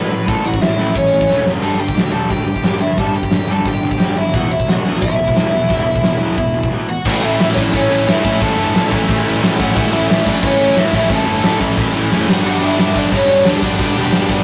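Rowdy and energetic, this punk rock excerpt charges along at 178 BPM, with a biting, overdriven lead guitar carrying the melody up front over a big-room drum kit with a punchy kick and fat snare, a growly fuzz bass, and background riffs from a compressed distorted guitar and a very quiet overdriven one, joined at 7.1 s by a double-tracked overdriven guitar as the music settles into A mixolydian after a brief break, all captured in a rough rehearsal-room recording with light reverb and saturation.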